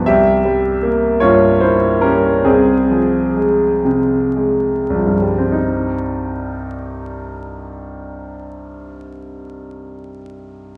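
In a flexible triple metre with rubato, the tempo drifts between 49 and 81 BPM, slowing noticeably across the opening 5.5 seconds. This brief excerpt, taken from a longer romantic character piece for solo piano in C minor, carries a bittersweet, brooding mood. The grand piano sounds clear and smooth with a vintage tint and long sustain, sitting up front and ranging from C2 to E5. The harmony moves from C7 through F minor over a C bass before settling onto C minor at 5.5 seconds, where a new passage begins. The instrument rings into a wet recital hall, heard from further back in the room, and a layer of vinyl crackle adds an aged patina to the sound.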